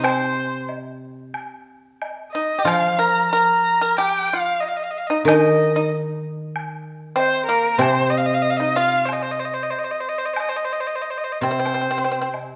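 A moderate recital hall reverb surrounds this short, tender fragment of Chinese traditional chamber music, cut from a longer piece and moving with a graceful, rubato feel. Up front, a single bowed erhu carries the melody with a clear, focused tone, colored by vibrato and portamento. Beneath it, a pipa played with fingerpicks adds a dry, percussive second line that sounds warm. The guzheng, also fingerpicked and placed prominently, supplies a low accompaniment whose silvery strings ring into the hall. A dark-toned woodblock keeps quiet time in the live room, and all four parts play together from the start until just past 12 seconds.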